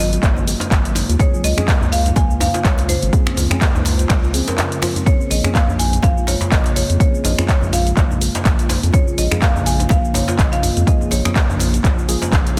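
A woody marimba melody with delay opens this earthy, hypnotic afro house excerpt, over an ethereal, airy pad, dark plucked kalimba arpeggios with gritty sampler character, and a round analog bass, with the pad, kalimba and bass each pumping from sidechain. Within the first half second a punchy, up-front electronic kick arrives with a kit of finger snaps, handclaps, shaker and dark hats on swung sixteenths, plus a soft-handed djembe set back in the mix. At 1.2 seconds a soft, mellow chord stab with chorus and delay joins as the harmony shifts from Ab7 to Dbmaj7, later settling on Bbm9, all under a dense, heavily limited master with light reverb.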